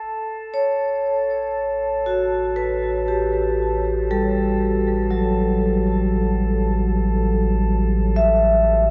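A deep, round analog bass on A1 and a pure, ethereal glass harmonica that fades out throughout open this serene, peaceful ambient excerpt at 59 BPM in 4/4 over an A chord, joined at 0.5 s by up-front, metallic, ringing vibraphone arpeggios played with medium mallets through tape echo, the whole piece sitting in a vast, echoing space with a huge reverb.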